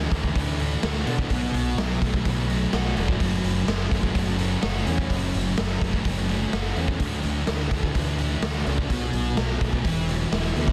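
A dark, double-tracked fuzz guitar riff opens this hazy, melancholic shoegaze and dream pop excerpt, its distortion washed in lush chorus, while a warm, overdriven fingered electric bass sounds beneath from the first moment. A raw garage drum kit joins at 0.1 seconds, its punchy kick, medium-tuned snare and hi-hat sitting up front in a bright stone room with a rolled-off top. The chords move from Dadd9 through Bm7 and F#m, return to Dadd9, then settle on B5 and Esus2, all under a dense, heavily limited modern master with a straight rock feel.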